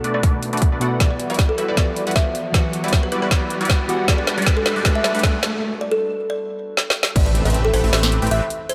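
Driven by a half-time 4/4 pulse at 156 BPM with a light swing, this dreamy, emotional future bass excerpt in A dorian sets a hollow, woody kalimba melody and glassy, wave-folded digital keys over a punchy, phased supersaw stab riff, metallic trap hats with a woody snare, a hard-clipped electronic kick from 0.2 s, and a background riser that builds through drum fills, followed by a break, before the impact and a fat, detuned analog bass arrive at the 7.2 s drop on Am9, with the melodic and bass parts pumping in a lush hall reverb.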